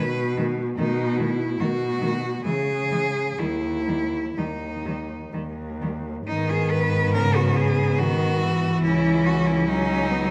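In a rubato 3/4 hovering around 60-74 BPM, this short, yearning and elegiac passage for cello ensemble in G# minor is cut from a longer classical piece and set in a reverberant recital hall. A focused, vibrato-laden melody cello sings up front with a smooth top, while a second bowed cello sits in the background, a distant, even accompaniment cello adds a smooth inner voice, and the rich bass cello, near at hand, shapes its lines with a soft attack and expressive portamento. The harmony settles onto G# minor at 6.3 s as the second section begins, then turns to C# minor at 8.8 s.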